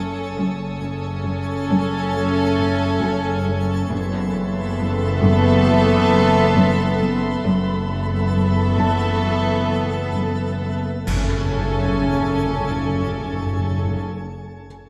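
A slow, straight 4/4 pulse at 67 BPM underpins this uneasy, tense cinematic suspense cue in F# minor, cut from a longer score. Soft-attack, sul tasto violin sections carry a floating melody, an intimate second line and a very quiet high texture above distant violas, a very quiet cello riff, and dark cellos and double basses holding low F#. Bright trombones and mellow French horns sustain chords beneath a twinkling granular shimmer and a felt-muted upright piano with audible action noise. Dry timpani on calf heads enter at 3.9 seconds, and at 11.1 seconds clash cymbals and concert bass drum mark an accent as the harmony returns to F#madd9, all set in a moderate scoring-stage reverb.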